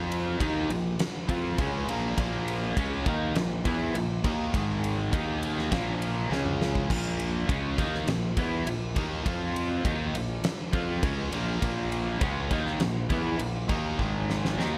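Over a straight 4/4 pulse, this energetic, anthemic hard rock excerpt stacks three overdriven, picked guitar riffs: a bright, phaser-tinged riff, a warm, sludgy one in the background, and a dark, lo-fi, double-tracked garage guitar that drops out at 6.9 seconds and returns at 11.6 seconds. A growly fuzz bass drives underneath, while a big acoustic drum kit sits up front with a fat snare, a punchy kick and a rolled-off top, and its fills close each of the two repeated passages. The whole mix carries light reverb and small-room ambience.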